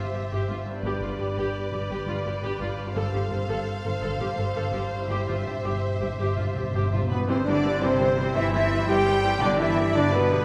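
In a 12/8 metre, this heroic, adventurous film-score fragment sets lush bowed violins on the melody and a second line over rich violas, ringing fingerpicked harp arpeggios, smooth cellos and woody double basses, with soft-mallet timpani entering at 5.1 seconds for a fill before mellow French horn chords, trumpet stabs, a dark clarinet and a pure silver flute join at 7.1 seconds and a distant oboe follows at 8.4 seconds, the ensemble heard from further back in a reverberant scoring stage.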